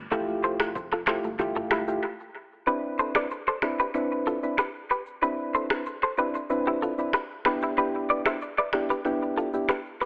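Drenched in echo, the recording has a thin, telephone-like quality, set in a light digital ambience. This sunny, breezy afrobeats excerpt moves at 94 BPM in a straight 4/4 in C major, drifting from Fmaj9 to Cmaj9 and then Em7. An electronic, overdriven afro-pop drum kit sits up front with a deep kick, finger snaps, handclaps, rim clicks, shaker and toms, all touched with tape echo. Up front too, a bright, twangy, compressed clean electric guitar picks a riff with tape echo, while soft, round, vintage electric-piano-like synth keys warble through a chorus effect in a dark accompaniment. A full sine sub bass with an added octave hums in the background until 2.0 s, and ringing, high-tuned congas played with soft hands also sit back in a small room until 1.9 s. A short break follows before the second section begins at 2.7 s.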